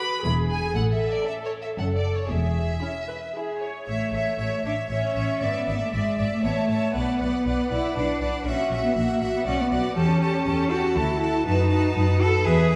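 Two bowed violin sections, a distant, focused one carrying the melody above a close, clear second line, open this spirited, lively classical-period movement for string orchestra in a rubato triple metre, joined at once by an intense viola accompaniment and, from 0.2 seconds, a rich cello section with a smooth top and an even, up-front double bass section sharing the bass, set in a dark mix with scoring-stage reverb.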